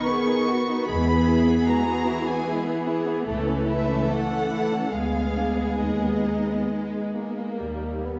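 The viola section sits up front in this slow, rubato classical movement for string orchestra, playing a warm accompaniment with vibrato, soft attacks and a sul tasto touch. Above it, the violins carry a solemn, yearning melody with light vibrato, while a second violin line sits beneath, both sounding intimate and close. A dark, smooth-topped cello section holds a bass line in the background, and the double basses join at 0.9 seconds to deepen the low end with their own light vibrato. The tempo drifts between 65 and 77 BPM in 3/4, and the melody drops out at 7.6 seconds as the harmony arrives on a D# chord. The whole passage is cut from a longer piece and wrapped in a wet scoring-stage reverb, with a muted, mellow top end.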